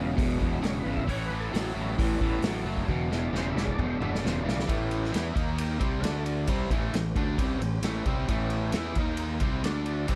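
Blues rock in the power-trio mold with a southern rock streak, this driving, swaggering cut from a longer piece moves at 133 BPM in a straight 4/4 in A mixolydian, as a bright, double-tracked crunchy guitar riff sits up front over a growly, fuzz-soaked fingered bass. A vintage acoustic kit with dark cymbals, a punchy kick and a pumping small-room sound enters at 0.2 seconds and rolls through a fill from 2.9 seconds. In the background, a gritty, thick tonewheel organ holds sustained chords with key click, chorus vibrato and a slow rotary speaker, while the second half at 4.7 seconds weaves D#5, C5 and D5 power chords between returns to A7.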